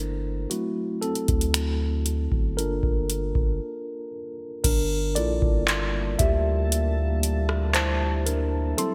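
A late-night, sensual contemporary R&B excerpt in G dorian at a slow 58 BPM, where a mellow, clean tine electric piano takes the lead from the start over a long, sine-deep 808-style bass and a booming analog drum machine with a deep kick, metallic hats, snaps, handclaps, rim clicks and crash, the drums bathed in gated reverb. The harmony moves from Gm69 through D7 and Gm9, with a break at 3.6 seconds. At 5.7 seconds a dark, full-bodied ambient pad with chorus and a soft, round pluck with chorus and digital delay drift in behind it, all set in light digital ambience with a bright 1980s-style sheen.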